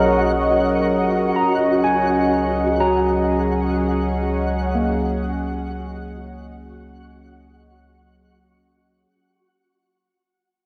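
Luminous and weightless, this ambient fragment drifts in free time, fading out across its full 9.1 seconds as a Bmaj9 chord gives way to C#sus24 at 1.4 seconds. A smooth, detuned analog pad sits up front with sustained chords, while a bright, barky tine electric piano, lightly overdriven through a combo amp with tape echo, plays arpeggios above a deep, round sine sub bass. An evolving, ring-modulated drone and a twinkling granular texture with octave-up shimmer complete the sound, set in wet spring reverb on a home cassette recording.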